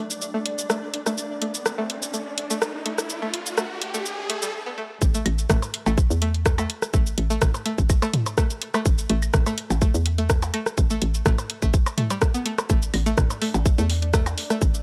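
A twangy, string-like resonator pluck riff with chorus, delay and a filter sweep opens this clinical, hypnotic minimal techno passage over a bright pulsing gated texture, garage drum kit cabasa, bright hi-hats and rim clicks, and an electronic riser, before a short break gives way at 5.0 seconds to a drop with a tight, up-front kick, a hollow, bouncy FM bass and overdriven electronic claves, toms and percussion blips with tape echo, the gated texture returning at 12.7 seconds, all in a dry, gritty recording.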